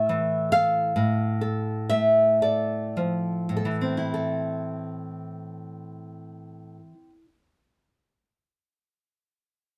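Recorded close and in fine detail with light reverb, this wistful, melancholic romantic excerpt for solo classical guitar in A minor drifts in a rubato 6/8 at 32-47 BPM, the bright, fresh-stringed nylon guitar fingerpicked up front with audible finger squeak, slowing through its opening section before settling on A minor at 4.1 seconds.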